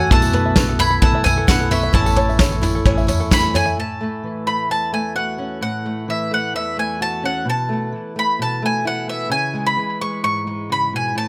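A bright, up-front bowl-back mandolin carries the melody through tape echo across this nostalgic indie folk excerpt at 130 BPM in A major, opening over a fuller band of boxy picked archtop guitar, plunky fingerpicked open-back banjo, thumpy pizzicato upright bass, a brushed vintage kit with a rolled-off top, jingly tambourine in the background, a soft bell-like glockenspiel and a very quiet, reedy harmonium. By 3.8 seconds that band has dropped away, and a fingerpicked steel-string acoustic guitar takes over the accompaniment beneath the mandolin until 11.3 seconds. The sound is dry, with little reverb.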